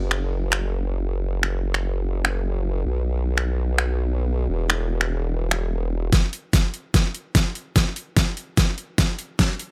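A saturated, chorused wobble bass of sawtooth and sine tones sweeps through its formant filter up front for the first 6.1 seconds of this menacing, chaotic heavy wobble dubstep excerpt at 147 BPM in a half-time feel, over an overdriven electronic kit of finger snaps, bright hi-hats and a deep snare, before a knocking, overdriven electronic kick enters as the bass drops out at 6.1 seconds for a drum-fill build-up that runs to 9.7 seconds inside a digital ambience.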